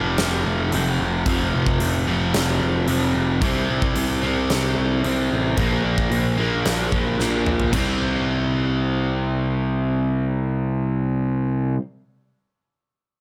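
Hard rock at 111 BPM in a straight 4/4, this anthemic, energetic excerpt is cut from a longer piece and moves through the power chords F5, C5 and Bb5 before landing on C5 at 7.7 seconds. Two overdriven electric guitars play the riff together from the start, both picked and sitting between F2 and C4, with the second guitar placed up front. A fuzz-soaked picked electric bass holds the low end from F1 to C2, its tone growly and bright, direct and amped, and pushed forward in the mix. A huge arena drum kit of kick, snare, hi-hat, toms and crash cymbal enters at 0.2 seconds, carrying a punchy kick, fat snare and sparkling cymbals in a hall-like space. The drums finish with a fill from 7.2 to 7.7 seconds and then drop out at 7.9 seconds, leaving the guitars and bass to drive the closing section in a small room ambience.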